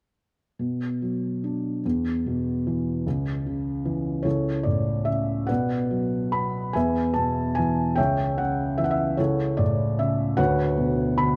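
A felt-muted upright piano, mellow and intimate with thick felt and audible action noise, plays alone up front from 0.6 to 11.4 seconds in this reflective, wistful excerpt of lyrical classical solo piano in B minor, unfolding in a rubato 6/8 at 50 BPM through chords from Bm and E5 to a closing Bmadd9/D, bathed in a moderate plate reverb with a dark production.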